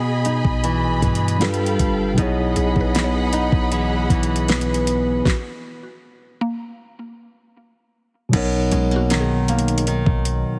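Romantic and dreamy, this contemporary R&B excerpt opens on a mellow tine electric piano, a woody, fingerpicked nylon-string guitar with tape echo placed up front, and dark, distant bowed strings with vibrato. A deep, boomy 808-style bass and a smooth electronic drum kit, with a knocking kick, fat snare and metallic hats, support them, while a round, mallet-like synth pluck with chorus and tape echo slips in at 2.6 seconds. The strings drop out at 5.2 seconds before a stop that lasts until 8.3 seconds, and the whole track carries light digital reverb and a heavily compressed, radio-like sound.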